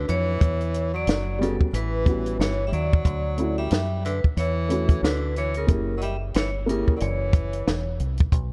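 Dusky and intimate in a small room with light reverb, this nocturnal, mellow jazz-hop fragment sets a ringing vibraphone melody with slapback echo over a breathy, subtoned tenor saxophone second line, a woody upright piano with audible key action that falls away at 6.9 s, a round, punchy dub bass, and an up-front, swung cocktail kit of hi-hat, tight kick and high-tuned snare.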